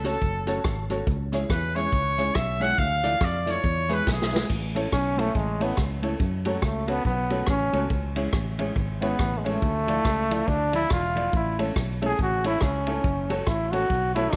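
A swung, bouncy ska groove in four drives this cheerful cut from a longer piece, with a vintage drum kit's dark cymbals, rim clicks and tight kick up front over a round, foam-muted fingered bass, alongside woody, slightly detuned upright piano stabs and a mellow electric guitar set in the background with lush chorus. A punchy trumpet with vibrato and a distant, roomy tone carries the opening melody until a drum fill at 4.1 seconds leads into a clear, smooth-topped trombone solo from 4.9 seconds onward. A moderate echo chamber reverb adds a vintage sense of space.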